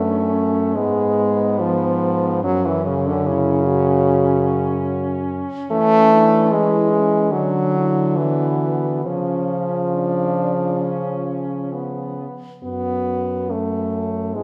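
Heard in the generous reverb of a church or concert hall, this melancholic, solemn fragment of a longer classical work sets four French horns in a lyrical quartet. The pulse moves freely in rubato at roughly 66-75 BPM in 4/4, centred on F# minor and tuned slightly above standard pitch. A mellow horn with light vibrato carries the melody from a more distant place in the blend, while a clear horn with vibrato and a soft attack sings a second line beside it, giving a faintly vintage colour. Up front, a warm, smooth-topped horn supplies the accompaniment and a close-miked horn anchors the bass, so the lower voices are the most present. The harmony passes from F#m through C#m/E and Bm/D to a C# chord at 9.1 s before returning to F#m at 12.6 s, just ahead of the cut at 14.4 s.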